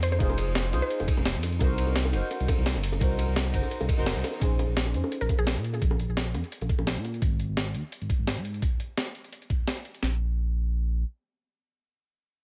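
Compressed, gritty sampler-style breakbeats from two layered drum kits and a dark, up-front sawtooth bass drive this lush, soulful liquid drum and bass excerpt in Bb minor at 171 BPM, joined by a detuned, phaser-washed chord stab, a woody FM mallet pluck in the background and high-tuned bongos in a small room, with a band accent at 4.1 seconds as the kick briefly drops out, and the bass playing alone once the drums stop at 10.1 seconds.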